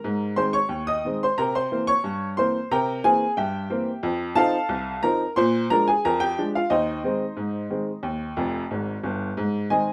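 An upright piano carries this short ragtime passage on its own, its tone clear and woody with a slightly detuned edge, a natural character and a short sustain. The mood is jaunty and playful, moving in a straight two-beat metre across a range from low F1 up to Eb6. The piano sits up front in a small room with a moderate reverb. The harmony passes through a chain of dominant sevenths before settling back home, and a brief piano fill from 8.4 to 9.4 seconds leads into the final chord. The recording lasts about 9.9 seconds and is cut from a longer piece.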